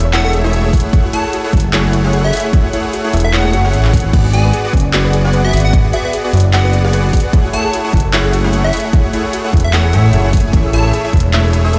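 A big, reverberant mix that sounds like it's played on a large system in a bare room carries this emotional, bittersweet future bass excerpt in F# minor at 150 BPM with a swung half-time feel, as huge detuned supersaw chords pump alongside a bright, punchy unison lead with phaser and tape echo, a mellow round pluck with chorus arpeggiates in the background, a fat tube-saturated analog bass sits up front, and a hard-clipped overdriven kick entering at 0.7 seconds drives a trap kit of bright hats, handclaps, crash and ride through Amaj7, F#m9 and G#m7b5 changes.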